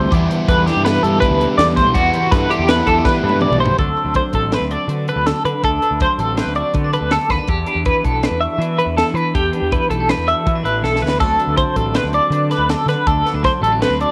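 A bright, twangy twelve-string electric guitar leads this math rock and midwest emo excerpt, its clean picked arpeggios shimmering with tremolo and analog delay over a restless, wistful mood at 162 BPM in 5/4. Beneath it, a second twelve-string sits up front with a clean, compressed accompaniment. A biting, double-tracked overdriven guitar riff joins only for the opening moments and drops out at 3.8 seconds, as the harmony moves between Em7 and D7. A punchy fuzz bass with overdrive drives the low end. A crisp fusion drum kit with an airy, high-tuned snare and bright cymbals plays fills, one leading into 3.8 seconds and another at 10.8 seconds. Cassette tape colours the guitars and drums, and a small room ambience gives the whole piece an intimate home-recorded feel.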